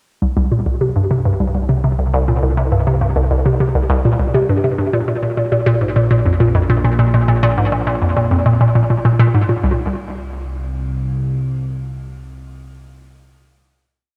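A hollow, nasal square-wave pluck opens this hypnotic, expansive piece of ambient space music, its bouncy 12-step sequence drifting against the bar up front through chorus, tape echo and shimmer reverb, while a mellow, evolving analog drone of sawtooth and pulse wave enters beneath at 1.1 s as a sustained root bass with chorus, and the dreamy, reverb-soaked cassette mix settles on a final chord from 9.6 s until the drone stops at 11.4 s.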